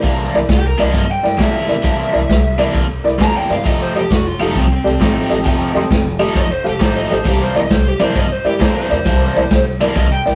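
Laid-back and swaggering, this electric blues shuffle rolls along at 133 BPM in a swung 4/4, moving from C9 to F9 and back in C mixolydian. A bright, cranked stack guitar drives the riff through phaser while a woody pizzicato upright bass anchors the low end. An up-front vintage kit with a punchy kick, dark ride cymbal and medium-tuned snare keeps the groove. A jangly, detuned honky-tonk upright piano comps from 0.3 s, and a lead guitar through a small cranked amp carries the melody from 0.5 s, both guitars overdriven. A very quiet, polished upright piano adds a high second line with a brief touch at the very start and again around 5.5 s, all captured in a rough rehearsal-room recording with light reverb.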